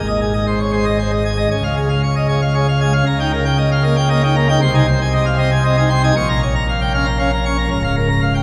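Heard from further back in a church with a long, wet reverb, this brief cut from a longer classical organ toccata in triple metre carries a jubilant, majestic mood. A solo pipe organ on full plenum with mixtures sounds brilliant and up front, its baroque voicing and chiff spanning from Db1 to Db6. Over its 8.4 seconds, the harmony moves from Ab through Db, Eb7/Db and Ab/C to Bbm and Bbm/Db.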